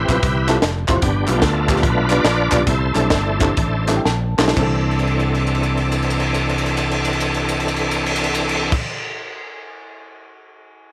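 A swung 4/4 groove drives this soulful, jubilant uptempo gospel excerpt, which eases into a slowdown after 1.0 seconds as a shouting, lightly overdriven tonewheel organ, with key click, chorus vibrato and a slow rotary speaker, takes the lead with sustained chords over a fingered electric bass. A dark, woody, slightly detuned upright piano adds a fill just before the second section begins at 4.6 seconds, while a crisp fusion drum kit, with a punchy kick, high-tuned snare and bright cymbals, fires off fills and hollow group handclaps sit in the background. A moderate spring reverb surrounds the ensemble, and the drums carry on alone after the other parts stop at 8.8 seconds.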